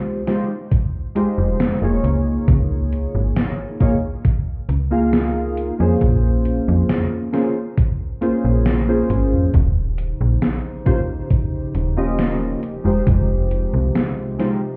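A slow, straight 68 BPM pulse in 4/4 anchors this hazy, melancholic vaporwave fragment in F minor, with a thumpy, overdriven electronic kick and a gritty, sampler-style 80s drum machine whose hi-hat and gated-reverb snare sit up front. Detuned, wave-folded synth keys warble through lush chorus and analog delay from the opening, joined at 1.4 seconds by a snappy FM bass with a metallic attack, while a dark, tape-like pad drifts in with a slow attack at 9.8 seconds. The chords move from Fm9 through Db69, Bbm7 and Eb13 back to Fm9, and the whole mix sounds muffled, as if heard through a wall in a reverberant club.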